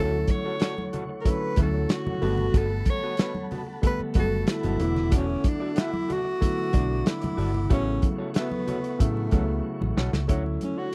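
A dry, close 1970s-style studio sound with little reverb frames this lush, warm soul excerpt, moving at 93 BPM in a straight 4/4 feel in A mixolydian. The harmony glides through Dmaj7, Gmaj9, E9sus4 and A6 before returning to Dmaj7. Up front, a close-miked tenor saxophone carries the melody as a jazz-style solo, with a soft attack and light vibrato. A natural-sounding grand piano supplies the accompaniment, while a soft, flute-like tonewheel organ holds clean, sustained chords through a slow rotary speaker in the background, and a slightly broken-up, lo-fi electric guitar picks a riff further back. Underneath, a dark, round, foam-muted fingered bass sits beside an acoustic drum kit placed up front, with a tight kick, a medium-tuned snare, hi-hat and a rolled-off top, and bright, thin-skinned congas add percussion from the background. A drum fill from 9.6 to 10.3 s leads back to the Dmaj7 chord.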